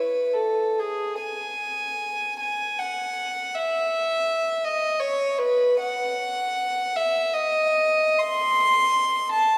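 A lone bowed violin, soft-attacked and pure in its floating sul tasto tone, carries this mournful, meditative classical fragment of 9.6 seconds in a free, rubato 3/4 around 78 BPM, ranging from G#4 to B#5 and bathed in a lingering church reverb.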